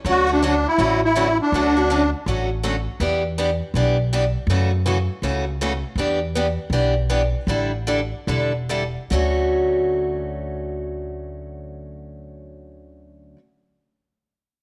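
Swung eighth notes in 4/4 drive this short cut from a longer acoustic string swing piece in the jazz manouche style, moving at 138 to 162 BPM in D major with a swinging, playful mood. A thumpy, woody upright bass with gut strings anchors the low end, plucked and dark and set up front. A reedy musette accordion with a shimmering, wet tuning carries the melody only briefly, from 0.1 to 2.1 s. A bright, boxy parlour steel-string guitar with fresh strings keeps up its picked accompaniment nearly throughout, moving from Dmaj7 through Em7, F#m7, Em7 again and A7sus4 before returning to Dmaj7. The tempo slows between 6.0 and 9.1 s, and the whole takes place in a small room with moderate echo chamber reverb.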